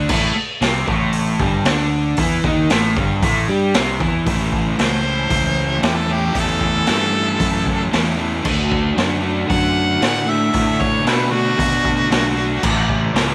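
A raw, up-front studio sound with a touch of reverb frames this rowdy garage rock cut, where a crunchy, double-tracked guitar riff and a growling, punchy fingered bass with overdrive push over a gritty, saturated small-room drum kit with a boomy kick and rolled-off top, until a harmonica run through overdrive enters at 4.8 seconds for a present solo full of vibrato and scooped notes.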